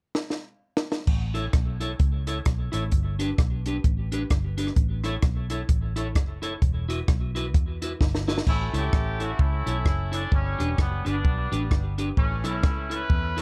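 Cheerful, upbeat ska at 130 BPM in A mixolydian with a swung feel, cut from a longer piece, where a dry compact cocktail drum kit with dark cymbals, a high-tuned snare and a punchy kick opens with a fill before a round, foam-muted vintage bass enters at 1.1 seconds, a clean picked electric guitar with analog delay adds accompaniment over A, G and Esus2, and a tight, bright horn section with its own analog delay takes the melody from 8.5 seconds, all set in a dark production with light reverb.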